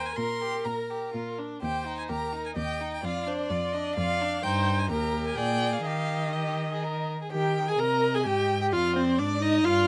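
A rich, up-front viola carries the accompaniment in this graceful, lively classical-period movement for string quartet in 3/4. It is cut from a longer piece. Above it, the first violin sings the melody with expressive vibrato and portamento, and the second violin adds a clear, smooth and even second line. Beneath it, the cello anchors the bass, up front and expressive with its own sliding portamento. Close, detailed microphones and light reverb capture the four bowed players, with the music moving into a new section at 7.3 seconds.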